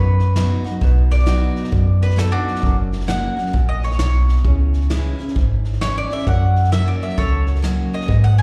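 A swung 4/4 groove at 132 BPM opens this sunny, heartfelt honky-tonk and classic country excerpt in B major. Soft brushes on snare, hi-hat and a tight kick enter at 0.2 s. Underneath, a round, dark FM bass sits up front with a fast, decaying attack. A bright, full-bodied dreadnought steel-string guitar and a worn, intimate grand piano carry the accompaniment through B, F#, C#m and F#. The piano stays in the background, with its action noise audible and a short sustain. From 0.8 s, a woody, double-strung picked mandolin takes the lead in a solo. Slapback echo touches the mandolin, guitar and piano, and the sound is mostly dry but heard as a live gig through the venue's PA, with a hint of recital-hall reverb.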